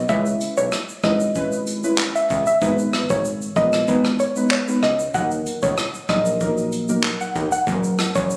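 Dancehall in G# minor at 95 BPM, this short cut from a longer piece feels sultry and tough, moving through C#m7, G#m and D#m before landing on F# at 7.7 seconds. A plucky analog bass anchors the low end from F#1 to D#2, its punchy, funky sawtooth and pulse-wave tone snapping in with a fast attack and decaying tail. Above it, a deep mellow chord stab fills out the middle with a dark, full-bodied, detuned sound treated with chorus, while a soft round pluck carries the melody between C#5 and F#5, gentle and wave-folded, colored by chorus and digital delay. An acoustic jazz brush drum kit plays handclaps, hi-hat, rim click, shaker and a boomy kick, sounding polished in its small room. At 7.7 seconds an ethereal pad slips in, barely audible, just before the cut ends at 8.4 seconds. The whole mix carries light reverb and a small room ambience, with the slightly intimate character of a phone capture.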